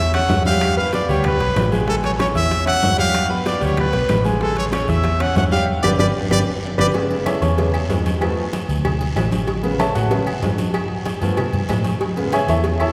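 A clear, up-front trumpet opens this joyful, danceable salsa excerpt in A major at 190 BPM, singing a vibrato-tinged pop-style melody over a bright baby grand piano with audible action noise and a dark, round, foam-muted electric bass. Just after the start the percussion fills in: low-tuned congas struck with hard hands, tight high-tuned bongos and cowbell, ringing metal-shell timbales with agogo bells, woody claves kept very quiet, and a raspy guiro sitting in the background. The harmony moves back and forth between Amaj7 and G, later G7. At 5.7 s a drum fill and a band accent close the first passage, and the trumpet stops at 6.9 s. From there the brilliant, polished piano takes a solo through to the end, carried by the bass and percussion. A wet church reverb with a long 3.4-second tail gives the whole mix the spacious ring of a large hall.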